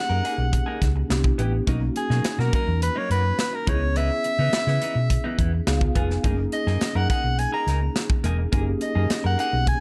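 Upbeat and breezy, this short excerpt of polished 1980s jazz-funk pop moves at 105 BPM in a straight 4/4 in F# mixolydian, its chords shifting from F#69 through Cmaj7, Bmaj7, C#m9 and C#7 before landing back on F#69. A warm soprano saxophone carries the melody up front with light vibrato and a subtone, over a mellow tine electric piano bathed in ensemble chorus that adds a fill from 5.4 to 6.2 seconds, while a semi-hollow electric guitar plays a clean, scooped, compressed riff with subtle chorus. Underneath, a round, amped hollow-body fingered bass and a crisp fusion drum kit with a punchy kick and medium-tuned snare drive the groove in a dark, warm, small-room production.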